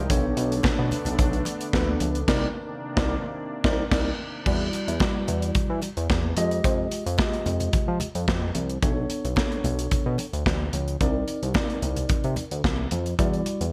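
Early-eighties boogie funk at 110 BPM with a danceable, late-night mood, built on a glossy, nasal chorused synth bass and a punchy, up-front studio drum kit with gated reverb, while a mellow tine electric piano carries the chords and soft, very quiet congas add close, dry detail; a lush, detuned unison pad with chorus ends at 4.4 seconds, near the close of a band accent that runs from 2.3 to 4.5 seconds, all framed in a bright digital 1980s-style production with light reverb in this fragment cut from a longer piece.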